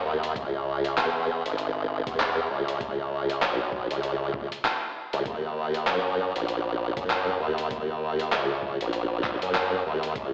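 Funky and gritty, this short glitch hop excerpt rides a swung sixteenth-note feel in 4/4. A wobbling formant-sweep bass opens at 0.0 s, blending pulse and sine tones through a formant filter with a fast attack, sustained notes, compression and a bright chorused edge that sits up front. A boom bap sampler-style drum kit joins at 0.2 s with handclaps and hi-hat, pitched down, compressed and placed up front. At 0.4 s an electronic kick drum adds a thumpy, pitched-down sampler hit, quieter than the other parts. Both drum parts sound re-recorded in a large room. The whole mix is bathed in a lush hall reverb and heard as if played on a big sound system in a bare room, with vinyl crackle and an AM radio tone.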